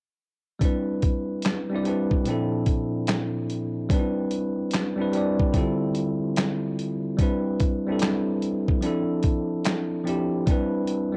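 Lo-fi hip hop with a dreamy, cosy mood and a swung sixteenth-note feel, cut from a longer piece and captured dry on a home cassette recording. A bell-like tine electric piano sits up front, heard through built-in speakers and rounded by a low-pass filter, playing jazzy chords such as Cmaj9, Bbmaj9#11 and Dm11, then returning to Cmaj9 when the second section begins at 7.2 seconds before moving to Fmaj13. A dusty, sampler-style drum kit is also up front, its thumpy kick, fat snare, hi-hat and handclaps compressed and gritty, as if re-recorded in a small room.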